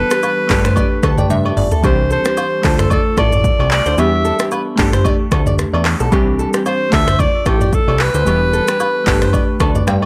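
A breathy, whispered alto saxophone carries an intimate melody up front through this romantic, joyful afrobeats excerpt at 112 BPM, lightly swung, with analog delay trailing its phrases over a chord cycle of Gsus2, Cadd9, Dm and Em7. Glassy, detuned digital keys with chorus add fills at 0.8 and 9.3 seconds, a dark fingerpicked flamenco guitar repeats a delayed riff, and a plucky, saturated analog bass with filter sweeps anchors the low end. An up-front deep house drum kit with a punchy kick, smooth hats, snaps, claps, rim clicks, shaker and toms drives the groove, with a drum fill at 1.3 seconds and agogo bells and woodblock sitting in the background of a dry, gritty hardware recording.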